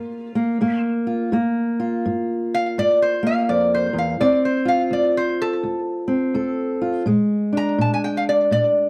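Mournful and brooding, this short cut from a longer acoustic country blues piece moves at 84 BPM in 4/4 with a swung eighth-note feel, passing from Gm7 to Dm7 at 4.2 seconds and Bb7 at 7.1 seconds. Up front, a lap resonator guitar played with slide and fingerpicks carries the melody in a metallic, nasal voice touched with slapback echo, while a dark fingerpicked steel-string acoustic guitar accompanies beneath it, its finger squeaks audible. The sound is a dry, close 1970s-style studio recording with light reverb.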